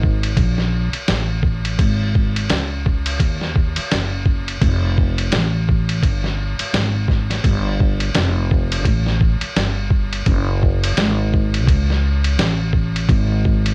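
Cool and warm, this jazz-hop cut has a relaxed swing and runs for 13.7 seconds as a short piece of a longer track. An acoustic upright bass, played pizzicato with a woody, growly tone, sits up front beside a lo-fi sampler-style drum kit of kick, snare, hi-hat and ride cymbal. The kit sounds compressed, pitched down and muffled, with a thumpy kick and tape-warm character. The whole piece has the dry, close feel of a home cassette recording.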